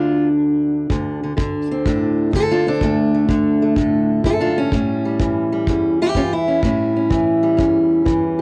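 This short excerpt has the homespun sound of a home cassette recording, with a light reverb around it. It's a gritty, rollicking acoustic country blues at 126 BPM in 4/4, swung at 68% on the eighth notes and tuned to A4 = 441 Hz. A fingerpicked steel-string parlour guitar carries the melody from D2 to A4, sitting up front with a bright, boxy tone, fresh strings and audible finger squeak. A tight, small-room kick drum, played with brushes, enters at 0.9 seconds and sits well behind the guitar. The harmony moves from a rootless G7 to D7 at 0.9 seconds, then to A7 at 4.7 seconds.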